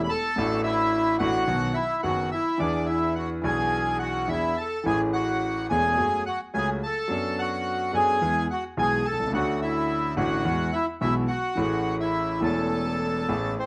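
In a moderate club reverb, this melancholic, tense tango excerpt at 107 BPM in A major unfolds with a rubato feel, as a reedy, bright bandoneon carries the melody up front with a slapback echo over an intimate, natural grand piano accompaniment, its action noise audible, moving through harmonies such as Dadd9/A, E7, F#madd9 and Dmaj7 before settling on Amaj7 at 11.6 seconds.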